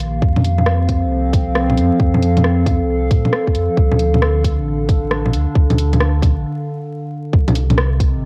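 A warbling, detuned tape-like pad with chorus and built-in reverb holds nostalgic, lo-fi chords moving through F, Dm and Cm in this ghostly, melancholic future garage excerpt at 135 BPM, swung on the 16ths. Beneath it, a round, sine-toned sub bass with tube saturation pumps with sidechain, while a tight, overdriven electronic kick entering at 0.2 s and a layered garage kit of bongos, hi-hat and rim click sit up front through cassette tape grit. A break arrives at 6.4 s, and the recording carries light digital ambience, home-cassette character and vinyl crackle.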